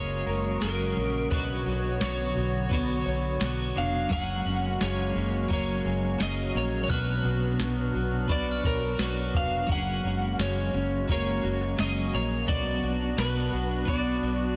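Floating and blissful, this dream pop excerpt sets a slightly broken-up slide guitar melody, steeped in delay and shimmer reverb, over dark chorused electric guitar arpeggios, a bright, twangy twelve-string with tremolo, a hollow, flute-like pad holding sustained F#add9 and Bmadd9 chords, a round, foam-muted bass up front, a tape-toned vintage rhythm box with deep kick, crisp snare, ride cymbal and tambourine, and a sparkling glockenspiel in the background that returns at 6.9 s, all within a lush hall and a dense, heavily limited modern master.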